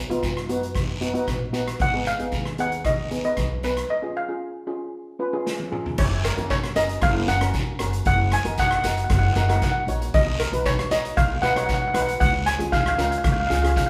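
This bouncy, sunny calypso excerpt opens with a bright double-seconds steel pan, struck with hard rubber sticks and placed up front, carrying the melody over a woody, thumpy pizzicato upright bass strung with steel. A second double-seconds pan, played with soft rubber sticks, supplies a mellow, vintage-sounding, band-limited accompaniment beneath the lead. A street-band drum kit, polished and up front with a boomy kick and medium-tuned snare, works through crash, hi-hat, rim click and toms, while a raspy guiro adds texture further back. A break begins at 3.9 seconds, and a drum fill at 5.5 seconds leads into a new section at 6.0 seconds, with the harmony moving through chords such as B, G#m, C# and D#m/F#. The band plays live together in one large studio, with a generous reverb giving the shimmering, metallic pans and the kit an airy sense of space.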